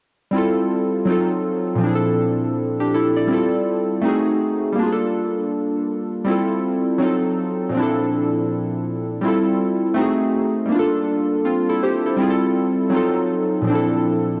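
A loose 16th-note swing in 4/4 gives this hip hop fragment its relaxed, lazy sway, carrying a cosy, nostalgic mood. A single analog keyboard plays alone from 0.3 seconds to 14.4 seconds, sitting up front with a round, detuned tone, a wave-folded edge, fast attacks that decay away, and a filter sweep. Chorus, cassette tape colouring and a low-pass filter soften the keys, and a lush hall reverb adds a gentle sense of space around them. The harmony circles through rich jazz-tinged chords such as Fmaj7, F7b9, Bbmaj9#11, F#dim7 and Gm9, repeating the cycle as the passage unfolds. The home cassette recording lends the whole fragment a faded, intimate character, like a memory replayed from an old tape.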